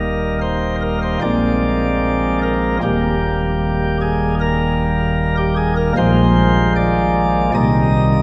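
Drenched in a long, wet cathedral reverb that decays over 5.3 seconds and heard from further back in the room, this brief passage from a longer classical chorale-style piece feels reverent and majestic. A solo pipe organ plays at a free, rubato 76 BPM in 4/4 and Eb major, its sparkling flute stops light and bright in a baroque voicing with a distinct chiff, sitting up front and spanning Eb1 to Eb5. The harmony moves from Eb through Bb9 and back to Eb before settling on Bb7 and turning to Cm at 7.5 seconds.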